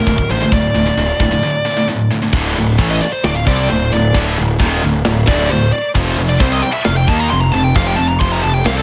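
A dark, high-gain lead guitar with tape echo sits up front and breaks into a solo at 2.3 seconds in this epic, dark heavy metal excerpt in D phrygian at 133 BPM, driven by a punchy, fuzzy picked bass, two bright distorted rhythm guitars (one scooped) riffing in the background, and a tight studio drum kit with bright china and crash cymbals, a medium-tuned snare and a tight kick, all in a small, lightly reverberant room as the chords move from D5 to F5 at 6.0 seconds.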